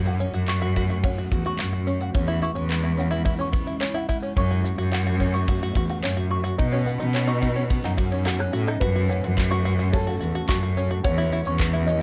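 A rich, bowed cello carries the bass up front with tube saturation, anchoring this intimate, wistful folktronica excerpt at 108 BPM in F# dorian, while a fingerpicked open-back banjo plays plunky, twangy arpeggios and a delicate, slightly out-of-tune music box tinkles a second line in the background, both through digital delay. A warbly, nostalgic tape-like pad holds sustained chords with chorus behind them, and an organic electronic kit of crisp hats, handclaps, rim click and shaker pairs with a punchy kick, which drops out for a drum fill from 8.3 to 8.8 seconds. At 8.8 seconds a soft, felt-muted upright piano enters with the melody, its action noise audible in the dark, dry mix.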